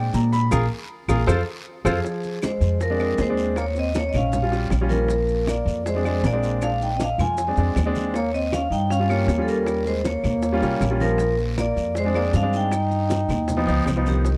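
Sophisticated and sunny, this Afro-Cuban jazz excerpt opens with a clear, present baby grand piano solo over bass and percussion before the band's accent and a drum fill lead at 2.0 seconds into a groove where an up-front, growly pizzicato upright bass, background congas, round bongos with cowbell, woody claves, raspy guiro and grainy maracas support a dark, ringing vibraphone melody with its motor off and a punchy trombone second line with scooped notes, all under light reverb and a dark production.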